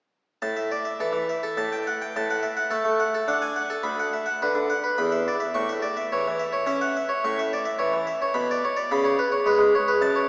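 The recording sits in a lush cathedral reverb with a long decay, heard from further back in the room through a small-speaker sound. This is a classical, baroque-style suite movement for solo harpsichord, cut from a longer piece, in a flowing triple metre shaped with gentle rubato. The harpsichord, in the French style with a single set of strings, has a plucked, round tone that still feels close and present within the spacious acoustic. It plays alone from 0.4 to 10.3 seconds, ranging from deep bass notes to bright upper tones, while the harmony moves through F#m/A, D/A and Bm/D before settling on A and turning toward Bm and C#5. The mood is radiant and serene, with the generous reverb lending the solo line a calm, luminous glow.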